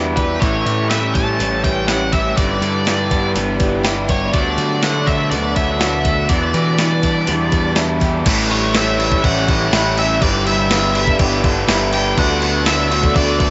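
A crisp 8-bit drum machine sets a straight 4/4 groove up front with a thumpy kick and a medium-tuned snare alongside a growling, round overdriven bass, soon joined by a faint, distant tambourine in this blissful, dreamy slice of shoegaze and dream pop. Behind them, a lo-fi small-amp guitar picks chorus-soaked arpeggios with tape echo, while a second small-amp guitar with reverse reverb, a biting overdriven guitar and a bright, double-tracked garage guitar with spring reverb stack riffs, and a lush sawtooth string machine holds soft, phased chords very quietly underneath. A dark octave-fuzz lead carries the melody with distortion and tape echo over a cycle of A7, G6, D6 and Em7, in a light reverb with a softened top end.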